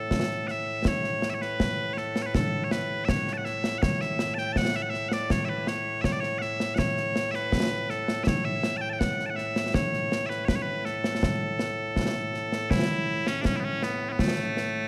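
A dark production set in a moderate concert hall reverb frames this stirring, ceremonial stretch of Scottish pipe music in 2/4, cut from a longer piece. Loud, piercing bagpipes carry the melody up front in one continuous solo line from the opening moment to 14.9 seconds. Close, dry concert snare and bass drum, with dark cymbals, sit just as far forward beneath them.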